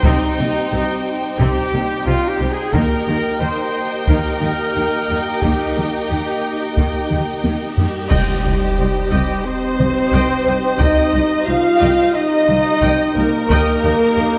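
Heavy-sticked taiko drums, close and dry, drive this dark, epic orchestral film cue, a fragment lifted from a longer piece in a straight four. Above them a mellow French horn section holds sustained chords while a clear, close-miked trumpet section punctuates with stabs, and a lush violin section carries the vibrato-rich melody with a focused, smooth top. Filling in the background are a second violin line, a distant viola section, and a full string section holding chords, with cellos and an expressive double bass section anchoring the bass. A drum fill leads toward a huge, very quiet reverse cymbal that begins at 7.8 s, where a very quiet concert flute also enters with a pure, straight-toned second line. At 8.1 s the impact lands and dark clash cymbals and concert bass drum mark an accent as the music moves into its second section. The whole ensemble sits in a wet concert-hall reverb, and lossy compression artefacts colour the sound.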